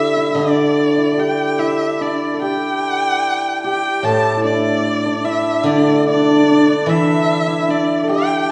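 A clear, bowed erhu carries the melody above the other parts, a single player whose smooth, even line is shaded with vibrato and gliding portamento and sits up front in the mix. Beneath it, a shimmering hammered dulcimer plays a second line in the middle register, slightly louder than the erhu and also placed close to the listener. Low in the texture, a steel-string zither played with fingerpicks gives silvery, ringing accompaniment. All three instruments play together for the full 8.5 seconds of this graceful, pastoral fragment of a longer Chinese chamber ensemble piece, moving in a loose, rubato four-beat feel. The ensemble is heard from further back in a recital hall whose generous reverb lends the sound an airy, open bloom.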